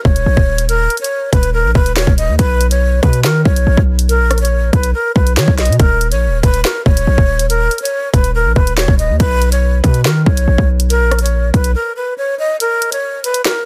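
Dense, heavily limited and nearly dry, this cold, tense half-time drill excerpt sets a breathy, mellow jazz flute with vibrato and tape echo over a punchy, sine-heavy 808-style bass and an up-front electronic kit of hard-clipped kick, sharp snare, rim clicks, handclaps and hi-hats, until the bass drops out at 11.8 seconds for a short break and the kick stays muted from 12.6 seconds as the flute and the rest of the kit carry on to the end.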